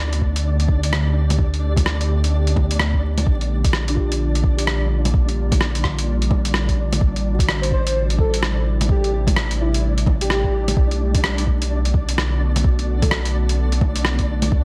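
Ghostly and rainy, this future garage passage at 128 BPM with a swung 16th-note feel sets an ethereal, phaser-tinged pad and a deep, round dub sub bass, both pumping under sidechain, against a flickering, grainy granular texture, a soft electronic kick and a muffled, pitched-down sampler-style kit of bongos, hi-hat and rim click. Dark, muted felt-like synth keys with tape echo slip in at 3.9 seconds, and an airy, dreamy lead with vibrato sings briefly from 7.7 to 10.8 seconds, while the whole passage moves through D7sus4, Bb6, Am7 and Bm7 chords, all wrapped in light reverb and vinyl crackle.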